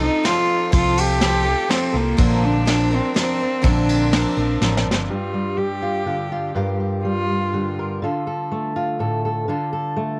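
This home recording on cassette, touched by light reverb, carries a wistful, yearning indie folk fragment with a building arrangement in G minor, at 123 BPM in a straight 3/4. An intimate, airy cello with light vibrato and a nasal sul tasto tone sings the melody through analog delay until 7.7 s, over a shimmering, octave-doubled twelve-string guitar, a round, punchy fingered electric bass and a small-room brush kit with dark cymbals, whose drum fill closes the opening before those three parts stop at 5.1 s. There a dark, fingerpicked steel-string acoustic guitar takes up the accompaniment as the chords move from F and Bbadd9 to Gm7 and Dm.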